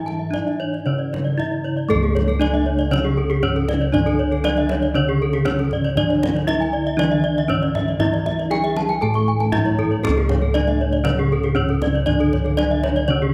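A straight 4/4 pulse at 118 BPM drives this hypnotic, brilliant Balinese gamelan passage in C# pelog, cut from a longer piece. A bronze metallophone struck with a horn mallet carries the melody with an airy, bright ring, while a second metallophone, played with a wooden mallet, sits dry and full in the background as accompaniment in the lower register. Two more metallophones spin arpeggios up high, one boxy and warm, the other gleaming, and every metallophone's paired tuning produces shimmering beats. Bossed gongs anchor the bass with a round, beating bronze tone, and a kendang adds tight, hard-handed percussion that sounds distant, as if in a large room. Close, detailed microphones and light reverb frame the ensemble, with a brief opening phrase giving way at 1.9 s to a longer passage that runs to the end at 13.3 s.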